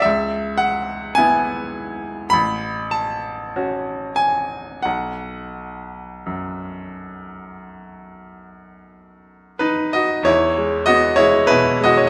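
Nostalgic and serene, this brief excerpt from a longer romantic nocturne in E major unfolds at a slow, rubato 42-53 BPM in 4/4, with a bright, polished baby grand piano playing solo from A1 to B5, moving through C#m7, F#m/A and B before settling on E at 10.3 seconds, set in a moderate large-studio reverb with lossy compression artefacts.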